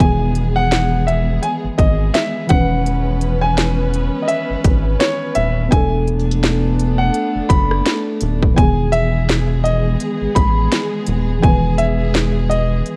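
This smooth, tender contemporary R&B excerpt in E major opens at once with a trap kit up front, its hard-clipped kick, sharp snare, crisp hats and rim clicks riding a swung 16th-note feel at 84 BPM, alongside a rubbery, bouncy square-wave bass that stops at 12.8 seconds. A warm grand piano carries the high melody over muted, felt-like synth keys softened with chorus in the background and a bowed string section holding intimate sul tasto chords with vibrato, as the harmony moves from Emaj7 through C#m7/E and Bm7/E back to Emaj7. The whole sound is wrapped in a worn cassette-tape ambience with warbly pitch drift.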